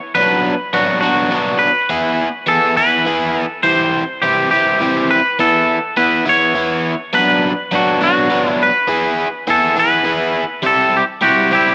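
A twangy, clean electric guitar carries the melody from the very start, its picked lines sitting up front and trailed by an analog delay. This short rock passage, cut from a longer piece, moves in a straight 6/8 at 69 beats per minute counted in dotted quarters, tuned slightly low to A4 = 438 Hz. Its mood is wistful yet carefree. Entering at 0.2 seconds, an overdriven electric guitar plays a riff beneath, double-tracked and compressed, with a bright, gritty edge. The harmony cycles through Bm, E, C and Asus2, then returns to Bm, E/B and C. Light reverb surrounds the pair, and the recording holds nothing above 10.9 kHz.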